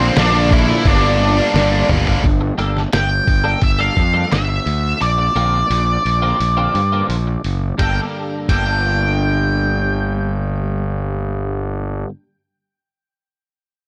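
Quiet-loud alternative rock with an angsty, brooding mood, this fragment opens with a dark, up-front octave-fuzz lead guitar melody trailed by digital delay, a growly fuzz fingered bass, a muffled, pitched-down, sampler-style drum kit with a thumpy kick and fat snare, and a brief riff from a background fuzz guitar and a scooped high-gain guitar that ends at 2.2 s after a drum fill, when a clean twelve-string electric guitar with ensemble chorus picks up arpeggios at 2.4 s, all in a dry mix until the drums drop out at 8.7 s following a short break.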